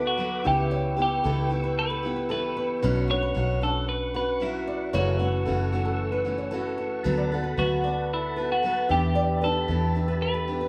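A straight, even 4/4 pulse carries this short acoustic pop passage, lifted from a longer piece and heartfelt and sunny in mood. Up front, a bright, twangy twelve-string electric guitar carries the melody with a clean, compressed tone, while a picked steel-string acoustic guitar supplies warm accompaniment beside it. A round, foam-muted electric bass with a dark, amped character holds the low end, also close to the listener. Further back, a flamenco guitar adds fingerpicked arpeggios in a shadowy tone. A clear tonewheel organ sustains chords colored by chorus vibrato and a slow rotary speaker. The harmony moves through C#m7b5, Bmadd9, F#m7, D6 and Em7, and the band sounds as if it is playing live together in one room, bathed in a generous large-studio reverb.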